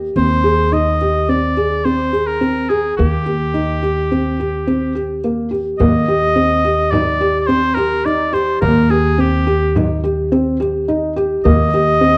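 Contemporary instrumental chamber music in an uneven 5/4 meter, this restless yet hopeful excerpt has a straight feel. A felt-muted upright piano sits up front with soft, mellow arpeggios, its thick felt and audible action noise giving it an intimate, dark character. Beneath it, a pizzicato upright bass holds a low Eb with a woody, steel-strung brightness. A clear oboe carries the solo melody from 0.2 seconds in a classical style with light vibrato, also placed up front. At 5.8 seconds, as the music moves into its second section, a small frame drum enters in the background, played with soft hands in a live room and sounding bright and acoustic. The production is dark and warm with light reverb, and the harmony shifts from an Ab(#11)/Eb chord to Eb6.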